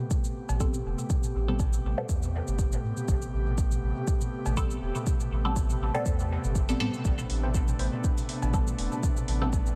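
A hazy, meditative slice of dub techno, cut from a longer piece, sits in a digital ambience at 121 BPM in A minor, swung on the 16ths and resting on a single Am9 chord. An up-front, tape-warm kick anchors a round triangle-and-square sub bass that pumps beneath a breathy, detuned pad with chorus, while a muted, nasal sawtooth chord stab with phaser and dub echo pulses through the mix. Metallic analog hi-hats with cabasa, dry background toms and cowbell with dub echo, and, from 7.4 seconds, a crisp, warbling wavetable stab with cassette-tape color fill out the texture.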